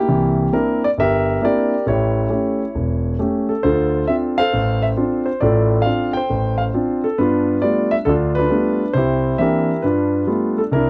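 Swinging eighth notes in 4/4 carry this sophisticated, relaxed solo jazz piece, cut from a longer performance, in which a concert grand piano moves from C9 through A7, Dm7 and G9 back to C9, its intimate, up-front sound marked by deep bass, a smooth vintage tone and audible action noise, captured in a dry, close 1970s-style studio recording with light reverb.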